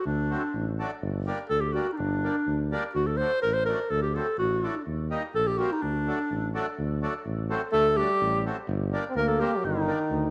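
A moderate echo-chamber reverb and small-room ambience frame this soulful, bittersweet klezmer fragment in a straight two-beat metre, cut from a longer piece. A breathy, close-miked clarinet carries the melody up front with jazz-inflected vibrato and soft attacks, over a mellow tuba bass with scooped notes and a reedy, full accordion accompaniment. At 7.7 seconds a clear, punchy trombone joins with a second line touched by light vibrato.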